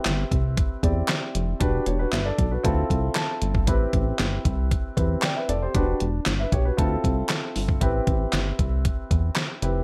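A straight 4/4 groove at 116 BPM drives this danceable, slick early-eighties boogie funk cut in A minor, where a detuned 8-bit digital drum machine with a thumpy kick, fat snare and gated reverb sits up front beside a dark, glossy chorused synth bass. A warm grand piano accompanies through a rootless Am9, then Em9 and Dm9 chords, and adds a fill at 2.9 seconds. A crisp, close and dry group handclap stays in the background, and the whole recording sits in light reverb.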